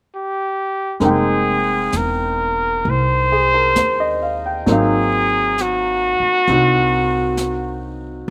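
A slow 4/4 swing at 66 BPM, with a gentle lilt on the eighth notes, sets the pace for this intimate, melancholic jazz ballad in F minor, tuned slightly flat of standard pitch to A4 = 435 Hz. A warm, vintage-toned trumpet opens alone at 0.1 s, singing the melody up front with light vibrato and scooped notes, touched by a slapback echo. At 1.0 s the rest of the band enters on an Fm11 chord: a clear, present grand piano comping with its own slapback echo, a woody, thumpy pizzicato upright bass, and a soft brush kit of snare and hi-hat with a high-tuned snare. The harmony moves to Ab13 at 4.7 s as the trumpet carries on in front of the trio. The sound is dry and natural, as if played outdoors, and this short cut from a longer piece keeps the horn clearly in front of the accompaniment.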